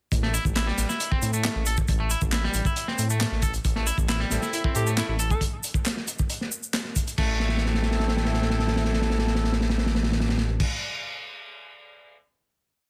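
Energetic and swaggering, this short breakbeat piece in A minor drives along at 136 BPM in a straight 4/4, opening directly on the drop at 0.1 seconds. A crunchy, looped breakbeat kit with edits sits up front, its punchy kick, medium-tuned snare and dark cymbals sounding gritty and saturated with a rolled-off top, while an electronic shaker and handclaps layer a machine pulse over the break until 7.2 seconds. Beneath it, a deep, rumbling detuned saw bass plays a dotted-rhythm line between A1 and A2, its beating sawtooth tone dark and sustained. An electric guitar at the edge of break-up repeats a twangy, picked 16-step sequence through tube saturation and tape echo, and from 4.3 seconds a mellow jazz horn section adds syncopated chord stabs in octave doubling, one shape moved in parallel. A clear alto saxophone with vibrato slips in a short answering phrase filtered to an AM radio sound, before the track settles onto a final chord at 7.2 seconds, a drum fill rolling through it in a small room ambience.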